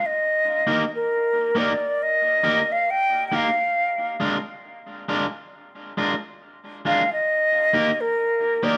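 A hollow concert flute opens this serious, laid-back reggae fragment, carrying the melody with a pure, tongued tone, vibrato and a touch of tape echo. At 0.7 seconds an electric guitar joins as accompaniment, its picked, twangy sound bright and just at the edge of break-up, shimmering with harmonic tremolo and its own tape echo. Both parts sit up front, the flute clearly above the guitar in level. The groove has a relaxed swung sixteenth-note feel in four, and the harmony moves from Bbsus4 to Bb7 and back to Bbsus4. A moderate echo chamber reverb surrounds the pair, giving the short passage, cut from a longer piece, a roomy, slightly vintage sheen.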